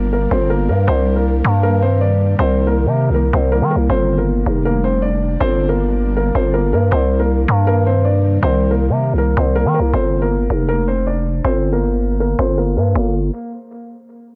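A growling, buzzy 808-style bass sits up front in this dark, brooding half-time hip hop excerpt, anchoring a mellow baby grand piano melody whose audible action noise lends it an intimate, vintage feel, shaded by a low-pass filter and analog delay. An ethereal, airy pad with ensemble chorus holds sustained chords in the background until 9.9 seconds, when a filter sweep on the piano begins and runs to 13.0 seconds, shortly before the piano drops out at 13.1 seconds. The recording carries a dry, gritty hardware character with cassette tape texture and studio reverb.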